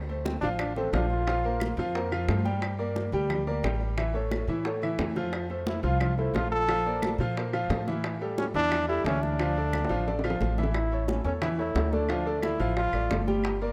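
A punchy, close-miked trombone with bright vibrato leads this fiery, passionate salsa excerpt, stating a brief phrase near the start and returning at 5.7 seconds to carry the melody through a minor-key progression. Up front beside it, a thumpy gut-string upright bass and a clear, boxy baby grand piano drive the groove, while high-tuned congas with hard hands, soft-handed low bongos and woody claves sit in the background. A drum fill at 9.7 seconds leads into a new section, all captured as a rough home demo with light reverb.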